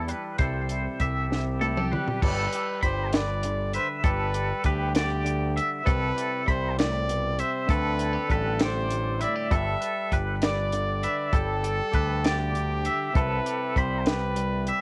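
A clear trumpet with vibrato and a smooth top carries the melody up front from 1.3 seconds, riding over a playful, intricate blend of math rock and midwest emo in a straight 6/8. Two twangy electric guitars, both clean and compressed and colored by cassette tape, split the work: one bright and scooped, picking the accompaniment, the other warm and fingered, playing high arpeggios through tremolo and analog delay. Beneath them a growling, overdriven fingered bass and a dry compact cocktail kit with dark cymbals, a high-tuned snare and a punchy kick drive the homespun cassette recording, the kit playing a fill at 1.3 seconds that leads into chords moving from G69 through Cmaj9 and D7sus4.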